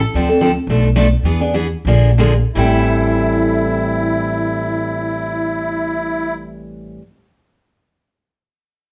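A bright, full-bodied picked steel-string guitar carries the accompaniment in this bittersweet, swinging snippet of acoustic string swing in A minor, with finger squeak audible as it comps through Dm7, Bm7b5, E7 and Bb7 before settling on Am7 at 2.6 seconds. The tempo ranges from 158 to 227 BPM and slows down in the opening passage. A woody, thumpy pizzicato upright bass anchors the band in a moderately reverberant room, and a reedy, shimmering musette accordion sits up front from 2.5 to 6.3 seconds, holding a single airy note.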